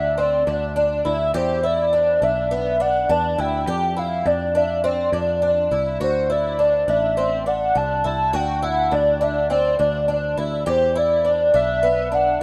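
Dreamy and floating, this dream pop excerpt pairs a warbling, nostalgic lead with detuned sawtooth and triangle tones, chorus, tremolo and tape echo over a shimmering, octave-doubled fingerpicked twelve-string acoustic guitar in boxy arpeggios, with a round, foam-muted picked electric bass underneath and light small-room ambience giving the rough home-demo mix its intimacy as the chords move from Em through Fsus2 to D.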